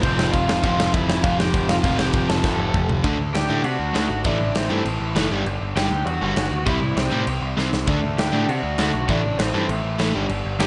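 An upbeat, energetic punk rock excerpt at 199 BPM in 4/4, where a dark, lo-fi lead guitar through a small cranked amp carries the melody with overdrive and digital delay over three overdriven rhythm guitars, one a hollow-body semi-hollow and one bright and double-tracked, riffing in the background. A growling, bright picked bass with overdrive sits up front beside a big acoustic rock kit with a punchy kick and medium-tuned snare, whose fill at 2.4 seconds leads into a half-time passage from 3.0 seconds. The chords move from F to D, Am, G5 and C, and the dry mix has little reverb and a top end that stops at 10.6 kHz.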